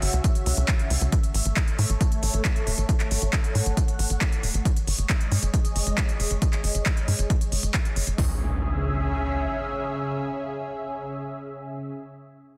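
A nasal, driving sawtooth sequencer bass pumps under a lush, detuned unison pad with chorus and phaser while punchy layered drums with crisp hats and handclaps push this euphoric, emotional uplifting trance excerpt through C#m, A and G#sus4, filter sweeps moving on bass and pad until the drums stop at 8.3 seconds and an electronic impact carries the sustained pad back to C#m.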